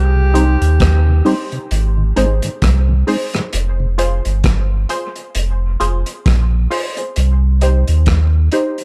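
Heavy and hypnotic, this dub reggae excerpt opens with a distant tenor saxophone phrase, carrying light vibrato and dub echo, that stops at 1.7 seconds above a deep, round sub bass sitting up front. A soft, flute-like tonewheel organ turning through a slow rotary speaker plays until 3.9 seconds, while muted, detuned chord stabs with a filter sweep, phaser and dub echo join a gritty, saturated breakbeat kit of punchy kick, hi-hat and rim click. The swung groove sits in a dark, small-room production with light reverb.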